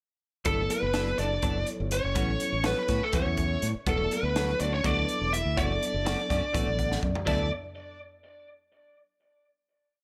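Slick and soaring, this short, complete electric jazz fusion piece races along at 247 BPM in a straight 7/8 in D major. It moves through Gmaj9, A13, Em9 and Dmaj9/F# before settling on a D69 final chord at 7.3 seconds. Up front, a bluesy, dark overdriven lead guitar picks a motif-based melody built from call phrases, while a bright fingered electric bass drives a syncopated riff with a direct, modern tone. A crisp acoustic drum kit in a small, pumping room carries the 7/8 groove with a high-tuned snare, punchy kick, hi-hat, crash and toms, adding a fill at 6.9 seconds. A mellow tine electric piano, heard through its built-in speakers with lush chorus, plays funk chord rhythms in quartal voicings and adds a fill of its own near the end, while in the background a clean, compressed electric guitar strums upper chord shapes as funky stabs through analog chorus and plate reverb. Further back, a breathy, whispered trombone with light vibrato and octave doubling carries a distant, intimate jazz-style second line under plate reverb and analog delay, and the whole mix sits in light reverb.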